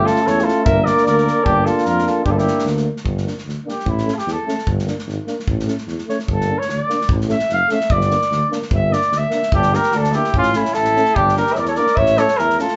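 Two flugelhorns open this fiery, virtuosic Balkan brass band excerpt at 148 BPM in a swung 2/4 and G dorian sharp4, the lead sitting up front with a classical, roomy tone while the second adds vibrato before dropping out at 2.6 seconds. A mellow euphonium in the background, a vintage-toned trombone and a close-miked tuba bass support the lead with light vibrato, over a punchy, polished acoustic kit of kick and medium-tuned snare, as the harmony swings between A and Gm. The lead flugelhorn takes a solo from 3.1 to 9.5 seconds before its partner returns at 9.6, all captured as a band playing live in one room with a short, wet reverb and a dull, softened top end.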